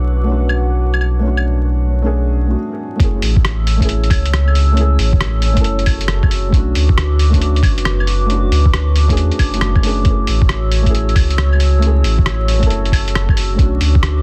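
Dense, heavily limited and dusted with vinyl crackle, this melancholic, ghostly future garage excerpt moves at 136 BPM with a swung 16th feel in F# minor, its chords alternating between Bm7 and F#m7. A soft, felt-muted upright piano with tape echo, a warbling, nostalgic pad with chorus and a deep, round sub bass all pump with sidechain, while a faint glassy texture drifts through the opening until 2.6 s. A muffled, pitched-down sampler kit of claves, hi-hat and rim click enters at 0.5 s, and after a brief stop a thumpy electronic kick lands at 3.0 s.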